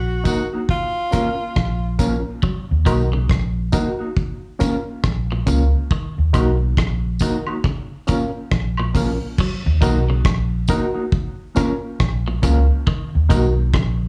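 A clear, up-front tenor saxophone with vibrato and tape echo opens this meditative roots reggae excerpt over a round, punchy, foam-muted electric bass, then drops out at 2.0 seconds as a twangy, compressed clean guitar begins picking arpeggios bathed in spring reverb at 2.4 seconds. A dry, dark drum kit with a tight kick, hi-hat, rim click and crash cymbal anchors the swung groove, joined by a faint, band-limited vintage layer of tambourine, woodblock, egg shaker and group handclaps. Barky, lightly overdriven electric piano stabs with fast tremolo and a mellow, fingered electric guitar with tape echo fill out the hypnotic sway inside a light small-room ambience.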